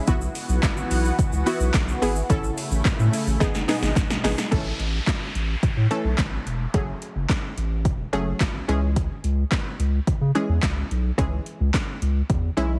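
Heavily compressed into a radio-style sound with light reverb, this driving, confident dance-pop excerpt runs at 108 BPM in a straight 4/4, led up front by a round, dark analog bass and a bright, detuned unison pluck, both pumping from the sidechain. An overdriven deep house kit with a deep kick, punchy snare and metallic hats plays throughout, while a barely audible group handclap sits underneath early on and a thick, lush sawtooth pad with chorus and phaser holds sustained chords until a drum fill closes the opening section. A downlifter enters at 4.5 s as the harmony moves from Bsus4, A and G#m to A, F#madd9 and C#m.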